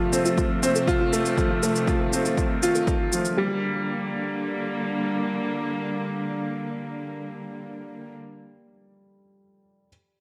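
A clear, woody upright piano riff with a worn, slightly detuned character and tape echo carries this moving, cinematic piano and strings electronica excerpt in G minor at 120 BPM, sounding through to 9.9 s. Intimate chamber strings hold soft-attack sustained chords with light vibrato, while a very quiet, warbling lo-fi pluck plays dark, nasal arpeggios and a punchy overdriven electronic kick and shaker drive the opening bars. The harmony moves from F to G minor at 3.4 s, and the pluck and drums fall away around that point, leaving piano and strings in a moderate recital-hall reverb.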